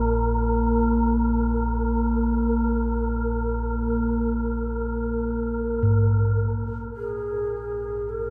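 Drenched in a huge, wet ambient reverb, this short dark ambient drone fragment, cut from a longer piece, floats in free time with an unsettling, dark mood. A deep, rumbling drone sits up front throughout, its detuned, nasal tone swelling in slowly and sustaining with a long release inside its own reverb. Above it, a wind-like tuned noise texture adds an airy hiss until 7.0 seconds, while a bronze singing bowl, struck with a felt mallet, rings out soft, metallic arpeggios with slow beating and a tape echo trailing each stroke. At 7.0 seconds, a long shakuhachi steps forward to carry the melody, its bamboo tone breathy and hollow, with a tongued chiff, a straight tone and lifted highs, until the fragment ends at 8.3 seconds.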